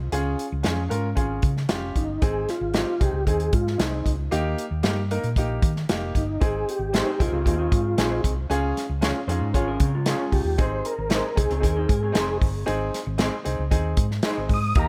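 A soft, flute-like tonewheel organ with chorus vibrato, key click and tape echo carries the melody from 2.0 s in this uplifting, uptempo 1960s-style soul excerpt, over an up-front, polished acoustic drum kit with a punchy kick, a round, dark hollow-body bass, clear short-sustain grand piano accompaniment, and two slightly broken-up picked electric guitars: one adds background stabs through ensemble chorus from 6.9 s, and the other plays a compressed, lo-fi riff from 7.1 s.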